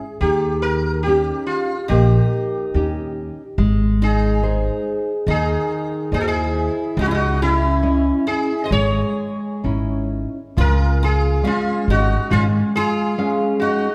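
A dark production in a reverberant recital hall frames this mournful, passionate fado-style ballad, cut from a longer piece and moving in a rubato 4/4 at 70 BPM in C# harmonic minor before shifting to Db major at 10.6 s. Up front, a buzzing, plectrum-plucked sitar carries the melody with shimmering sympathetic strings over a fingerpicked nylon-string guitar with deep classical body and audible finger squeak, while a woody pizzicato upright bass, also forward in the mix, enters at 0.2 s. A bright, octave-doubled picked twelve-string acoustic guitar adds a second line from 1.9 s.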